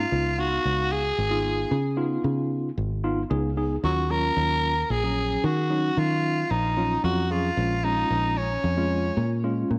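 A growling tenor saxophone leads this short progressive instrumental excerpt, its raspy, gritty jazz-style solo sitting up front with bright vibrato from the start until 9.4 s. Moving at 113 BPM in 7/4 with a straight feel, the music is driving and tense, tuned slightly off standard pitch at A4 = 438 Hz. Beneath the horn, a fingered electric bass sounds punchy and direct, its foam-muted tone placed close to the listener. A worn tine electric piano supplies the accompaniment, clean yet slightly out of tune, as if heard through built-in speakers. The harmony shifts from C#7 to D#m7 and then to A#m7, and a moderate echo chamber reverb gives the whole a roomy tail.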